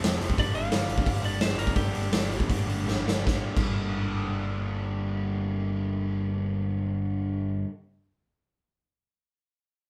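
Gritty, up-front garage drums with a punchy kick and a pumping stone-room sound drive this angry, raw punk rock clip in G minor at 150-177 BPM, slowing down early on and hitting a fill at 2.9 seconds before dropping out at 3.7 seconds. A slightly broken-up lead guitar solo enters at 0.4 seconds over a Gm chord, while two bright picked guitars, one crunchy and one distorted, hold down the riff beside a growly overdriven picked bass. The band sounds live in one room with light reverb.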